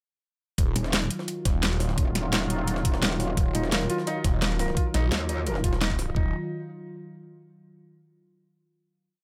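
Dark technical drum and bass, tense and aggressive, that drops in at 0.6 seconds with a knocking, up-front electronic kick, a tight dubstep kit with a huge snare and metallic hats, and a gritty, pitched-up jungle breakbeat looped in the background. A swirling, overdriven detuned saw bass plays chopped phrases through a phaser, and a metallic FM wobble bass answers it with changing wobble speed, under a bright, evolving resonant pad with a filter swell, chorus and sidechain pumping. At 3.5 seconds a soft, felt-muted upright piano adds a five-step arpeggio loop drifting against the bar through tape echo, before the piece settles on a final chord at 6.2 seconds.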